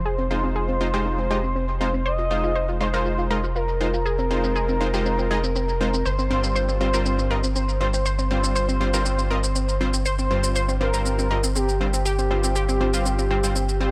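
Progressive house with a driving, expansive mood, in this excerpt a smooth, mellow sawtooth lead with vibrato and portamento sings the melody over a deep, round analog bass, while a detuned, warbling analog pluck plays arpeggios through a filter sweep. Punchy, airy supersaw stabs with a noise layer and digital delay enter at 0.3 seconds, and a layered, tape-warm electronic shaker sits in a small room. The harmony moves from Fm7 to Csus4/G at 6.1 seconds, framed by dark production with light reverb and digital ambience.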